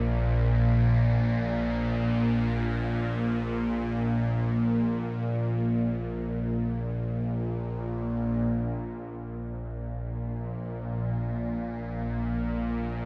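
Ominous and dark, this ambient piece drifts in free time, a short passage cut from a longer work. A single bowed-like drone carries it alone from 0.0 to 13.1 s, sitting low between Bb1 and Bb2. Its string-like, sawtooth tone is tense and bright, thickened by detuned unison voices, a noise layer and a touch of vibrato, and it sits up front in the mix. The drone rises in on a slow attack, holds as a sustained tone and fades through a long release, colored by its own reverb, phaser and delay. A second section begins at 8.5 s, and the whole is wrapped in a wet, cathedral-like reverb with a long decay and a dark, warm production.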